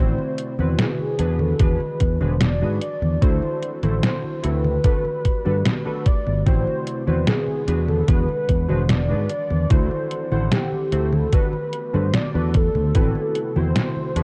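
A fingered electric bass sits up front, punchy and pushed through transformer saturation, carrying the low end of this woozy, hazy vaporwave excerpt in A dorian at 74 BPM in straight 4/4. Above it, a velvety synth lead built from detuned sawtooth and triangle unison voices glides between notes with portamento, its smooth tone coloured by chorus, cassette tape character and tape echo. Warbly lo-fi synth keys with a mellow tone, a fast attack that decays and subtle chorus fill in the accompaniment, while a very quiet, nostalgic tape-like pad holds sustained chords from 0.2 seconds with a slow attack and long release. The drums come from a detuned 8-bit digital drum machine playing congas, hi-hat and a medium-tuned snare, overdriven and re-recorded in a small room, joined at 1.6 seconds by a thumpy, overdriven electronic kick that drops out at 13.1 seconds. The chords cycle through Am69, E9, D9 and Gmaj9, and the whole excerpt is wrapped in a worn ambience of old tape with a warbling pitch drift.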